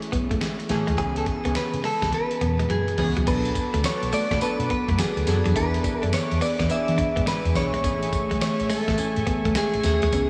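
Opening on detuned, evolving analog keys and a gritty, compressed sampler-style kit with a thumpy kick and fat snare, this bouncy, punchy new jack swing R&B cut at 105 BPM with a swung 16th feel adds a dark, round fretless bass and a clean picked guitar riff, brings in a direct-recorded guitar melody glossed with lush chorus, shimmer reverb and slapback echo at 1.0 seconds, and after a drum fill from 2.1 seconds, lays a mellow, warbling sawtooth pad in the background at 3.3 seconds as the chords move from Amaj7 and C#m7 through Bm7 and E7, all set in a wet hall reverb that gives it a big arena sound.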